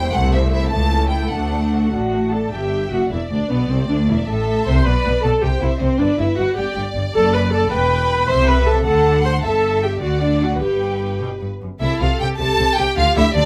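A quick classical-period movement for string orchestra in G major, this cheerful, graceful passage moves at 103 BPM in a straight 6/8, cut from a longer piece. A violin section carries the melody with a focused, vibrato-rich tone, while a second violin line with a soft attack and expressive character ranges beneath and above it. The viola section sits up front with a smooth, even accompaniment. Beneath them, the cello section adds an intense bowed bass, joined by a lush double bass section reaching down to E1, and both cut off at 13.4 seconds just before the upper strings finish. The harmony travels from A minor colours through D, E minor and B minor shadings to a settled G around 10.6 seconds before the opening idea returns at 11.8 seconds, all set in a moderate studio reverb.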